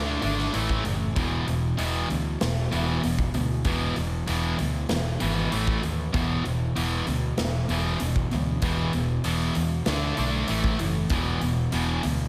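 Energetic and anthemic, this hard rock excerpt drives along at 96 BPM in a straight 4/4, cut from a longer piece and tuned slightly flat of standard pitch. Two distorted electric guitars play the riff from the first moment to 12.3 seconds: one bright, high-gain and up front with a slapback echo, the other sludgy and overdriven with a warmer edge, both picked across a range from E2 to D4. Beneath them a vintage muted fingered electric bass adds a dark, round, amped low end, while a big acoustic rock kit enters at 0.2 seconds with hi-hat, a punchy kick and a medium-tuned snare. The harmony cycles through power chords on D, A and E. A moderate scoring-stage reverb gives the whole mix a big arena sound.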